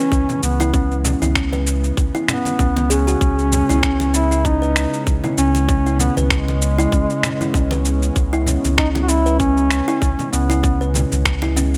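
Organic downtempo at 97 BPM in C# minor, mystical and hypnotic, where an up-front, warm duduk sings a folk-style solo with vibrato and tape echo over a single C#m7 chord, a woody, thumbnail-plucked kalimba plays short, echoing arpeggios, a tense, string-like drone hangs in the background with sidechain pumping, a round sine sub bass with tube saturation pulses beneath, and a tight electronic kick, gritty sampler-style cabasa and finger snaps, and bright, hard-handed congas set a lightly swung groove until the duduk drops out at 10.9 seconds.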